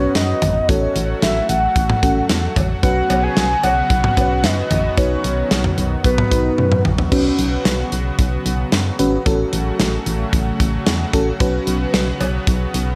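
Light reverb and a small-room ambience frame this wistful yet bright synth-pop passage in straight 4/4, cut from a longer piece. A full, round synth lead layered with a sub octave carries the melody until 6.8 seconds, coloured by chorus, phaser, vibrato and analog delay. Beneath it, an FM electric piano with a soft pad layer gives dreamy, mellow accompaniment, while a lush unison pad of detuned sawtooth voices holds thick, warbling, vintage chords with a slow attack. A punchy, digital FM bass anchors the low end, and an up-front acoustic studio drum kit with kick, medium-tuned snare, hi-hat, toms, crash cymbal and cowbell enters just after the start. A drum fill closes the first section at 7.1 seconds, opening a second section where the harmony keeps returning between Bsus2 and F#m/A.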